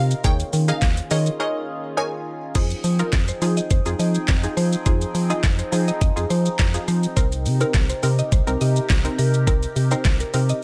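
A straight 4/4 groove from an up-front electronic R&B kit (knocking kick, deep snare, metallic hi-hats, handclaps, shaker and crash) drives this confident, bittersweet dance-pop excerpt, as a hollow, dark, organ-like FM bass, a lush, detuned unison pluck and a bright, evolving resonant pad with chorus and phaser all pump against the sidechain, while a glassy, crystalline wavetable pluck with dub echo carries the melody until 2.4 s, within a break that runs from 1.4 s to 2.6 s, and from 2.6 s a woody, round mallet-like synth pluck takes over the tune from the background in a dry, close mix.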